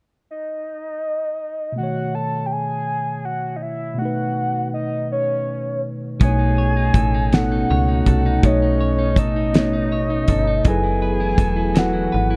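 This slow, sultry R&B piece in 6/8 moves at 54 BPM with a late-night mood and a dark production in a small room. A soft synth lead layered with a sub octave opens the melody at 0.3 seconds, round and full, with vibrato and a shimmer of chorus and phaser. A mellow tine electric piano joins at 1.7 seconds, clean and direct, as the harmony settles on B9 and later moves to F#m11. At 6.2 seconds the band arrives. A damped 70s drum kit sits up front with a fat snare, a tight kick and a rolled-off top, and a snappy, metallic slap-like FM bass sits beneath it. A clean, picked electric guitar adds a compressed second line through tape echo, while a hollow, flute-like pad sustains very quiet chords under the rest of this warm excerpt from a longer piece.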